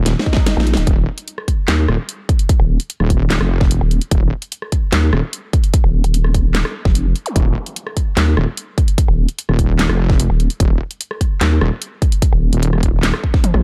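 A dark, dry production opens this cut from a longer heavy wobble dubstep piece at 148 BPM in a half-time 4/4 feel, where a saturated, detuned sawtooth wobble bass and a nasal, formant-filtered vowel-sweep wobble bass, both chorused and up front, churn through a chaotic low register over a punchy layered electronic kick and a dubstep kit with a huge snare, handclaps, hi-hat, rim click and toms, while a background swell and zap flicker in at 0.2 and 7.3 seconds and drum fills mark the opening and the close at 13.4 seconds.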